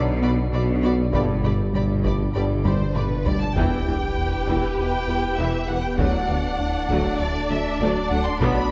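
Dark, distant violin sections carry a lush, vibrato-rich melody and second line over warm violas, a glassy FM pad with chorus and phaser, a rubbery square-bass riff, deep sub bass, clear cellos, mellow tuba, warm double basses and very quiet mellow horns and clear trombones in this futuristic, vast cinematic hybrid film-score excerpt at 99 BPM in E minor, where a distant taiko ensemble enters at 1.1 seconds and a huge sub-drop impact lands at 3.6 seconds, all in a moderate scoring-stage reverb.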